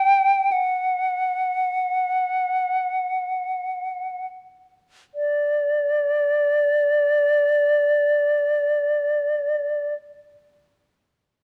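In free time, this short excerpt from a longer classical piece unfolds as an expressive solo for unaccompanied flute in D major, its pace slowing over the first 5.2 seconds. A silver concert flute carries everything alone from the start until 9.9 seconds, moving within a narrow span from D5 to G5. Its metallic, pure tone has a soft attack and vibrato, and it sits up front in the mix. A moderate recital hall reverb lends the sound a sense of space, within a dark production. The mood is serene and nostalgic, with a second section beginning at 5.2 seconds.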